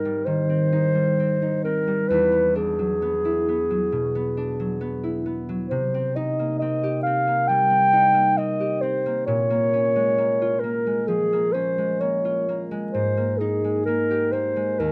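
Flowing in a rubato 4/4, this dreamy, pastoral fragment of an impressionist classical duo places a dark, smooth-topped clarinet melody up front over fingerpicked concert harp accompaniment, whose ringing tones drift from Abmaj7 through E9, Cm7 and Bbm7 to a closing Absus2 in a light reverb.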